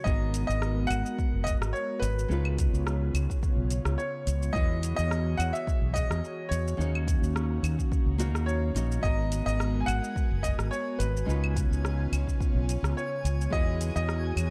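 A dark, dry production frames this smooth sunset chillout excerpt, its lightly swung groove built on an electronic kick, a deep house kit of claves, metallic hi-hat, rim click and shaker, and a round, punchy fretless bass sitting up front. A brilliant grand piano carries the melody through a digital delay over fingerpicked nylon-string guitar and an airy, breathy pad thickened by chorus, cycling through G#m9, C#9, Emaj9 and D#m7. At 10.0 s a twinkling granular texture with an octave-up shimmer appears in the background.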